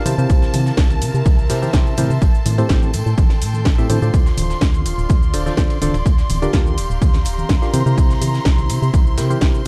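Piano house at 125 BPM with a bittersweet, soulful mood, this fragment of a longer piece moves through C7, Am7, Dm7 and Gm7/D chords. A punchy, tape-warm electronic kick sits up front beside an overdriven house kit with a cracking snare, hi-hat and shaker, while a gritty breakbeat kit with high-passed ride and snare and distant, hard-handed congas and tambourine stay in the background. A dark, hollow FM bass and a full-bodied, wave-folded organ stab riff with chorus and tape echo pump under the sidechain alongside an airy, breathy pad and a clear, bowed string section holding sustained chords, all inside a dark digital ambience.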